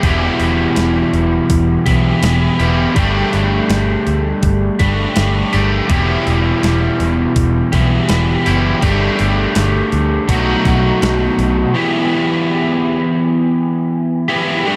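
A bright, picked, overdriven guitar with analog chorus sits up front in this hazy, brooding shoegaze and dream pop excerpt at 82 BPM in E minor, its riff moving through Em, Gsus2 and a B7 before landing back on Em, then ringing on alone from 11.7 to 14.8 seconds. Beneath it, a cranked stack guitar plays its own picked riff with overdrive and reverse reverb, while a dark, round, foam-muted electric bass and a thumpy, tape-warm, sampler-style 8-bit drum machine with hi-hat and a medium-tuned snare hold a straight 4/4 pulse. A lush hall reverb soaks the whole mix in a dreamy wash.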